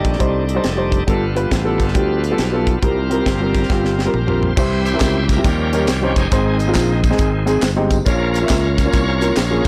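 Uptempo gospel with a swung, soulful yet solemn feel, cut from a longer piece, it opens with a woody upright piano full of audible action noise, a shouting tonewheel organ with key click and slow rotary speaker, a barely audible mellow French horn section, a growly, punchy fingered electric bass with tube saturation, and a tight, dry funk drum kit with a high-tuned snare. After a drum fill at 3.7 seconds, the horns drop out at 4.6 seconds as the organ takes a solo and tambourine and handclaps join quietly in the background. The recording sounds blown-out and overdriven, with light reverb and small room ambience.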